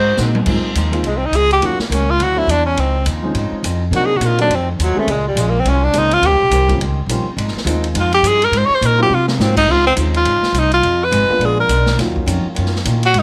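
A boxy, picked acoustic guitar sits in the background beside a woody, thumpy upright bass from the opening moment. A distant, roomy drum kit with dark cymbals and a boomy kick then sets up a brisk, brassy big band swing with a fill at 0.2 seconds, as an intimate grand piano with audible action noise adds chords. From 1.1 seconds a breathy tenor saxophone takes an up-front solo full of subtone and vibrato, continuing through another drum fill and a shift to a new key centre at 9.7 seconds until this fragment of a longer piece breaks off.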